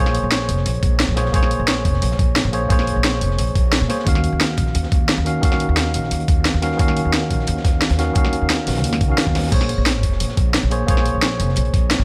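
Liquid drum and bass at 176 BPM in Bb minor, this short cut from a longer piece feels dreamy and melancholic, drifting from Bbm9 to Ebm9 at 4.1 seconds and back to Bbm9 at 9.5 seconds. Up front, a worn, slightly out-of-tune tine electric piano plays a mellow accompaniment through its built-in speakers, its clean tone trailed by delay. Beneath it, a woody pizzicato upright bass with steel strings holds the low end throughout. The drums stack a layered, produced electronic kit with a cracking snare, hi-hat and crash cymbal, sitting forward in the mix, over a dark, saturated breakbeat kit with a high-tuned snare and rolled-off top, high-pass filtered and tucked into the background. A gritty, thumpy sampler-style kick, compressed and tape-warm, arrives at 0.8 seconds, and a light reverb gives the parts a soft sense of space.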